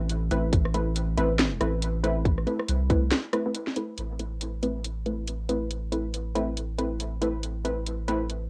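Deep dubstep in A minor at 139 BPM with a swung, half-time 4/4 feel, brooding and heavy, this short cut opens on an Amadd9 chord as muted, detuned sawtooth dub stabs with a filter pluck, chorus, cassette tape and dub echo sit over a round, soft sub bass with tube saturation, while a garage kit of hi-hat, rim click and cracking snare plays with overdrive and tape grit, a tight overdriven electronic kick drops out at 3.0 s before a break at 3.1 s, and the whole has a moderate studio reverb and a homemade cassette sound.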